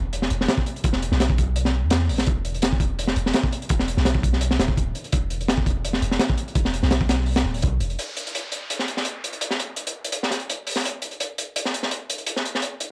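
A crunchy breakbeat kit sits up front in this frenetic, atmospheric drum and bass cut from a longer jungle piece, its high-tuned snare, tight kick and hi-hats sounding dark, gritty and saturated with a rolled-off top, running from 0.1 to 12.9 seconds at 168 BPM in a straight 4/4. Beneath it, a deep, mellow 808-style sine bass with a fast attack holds long decaying notes until 8.0 seconds, after which an electronic downlifter drifts in the background. The dry hardware recording carries transformer and cassette tape coloring, tuned to A4 = 445 Hz.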